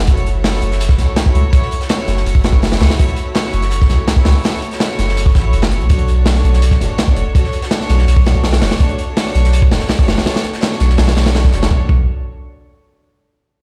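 A deep, round dub sub bass opens the piece, sitting up front in the low register between F#1 and C#2 with a soft, sustained tone and a fast attack. Straight after it come two crunchy breakbeat drum kits: the main one is saturated and gritty, with a tight kick, a medium-tuned snare and hi-hat, while a second, very quiet layer of hi-hat and snare adds faint texture underneath. A rich chamber string ensemble holds bowed chords with light vibrato and an earthy, smooth-topped sound, moving from F#m7 to Bm9 at 5.9 seconds. This is dark, atmospheric drum and bass with a jungle flavour in B minor, driving in 4/4 at 165 BPM with a straight feel, the whole passage playing as a drop until 11.7 seconds. The sound is dry and close, as if played on a big sound system in a bare room, with mid-forward drums whose top end is rolled off.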